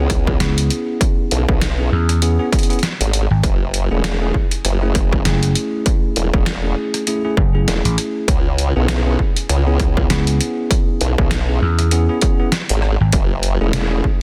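A punchy, tube-saturated vintage slap bass sits up front in this swaggering, gritty glitch hop excerpt at 99 BPM in C# minor, alongside a wobbling formant-sweep bass with chorus and a distorted, layered electronic kick. A compressed, pitched-down boom bap sampler-style kit adds hi-hat, rim click and a medium-tuned snare with a tape-warm edge, while a bell-like tine electric piano plays bright stabs through vintage 12-bit sampler grit, sidechain pumping and digital delay. The swung 16ths ride over C#m7 and F#m7 chords in a dry, dense, heavily limited mix.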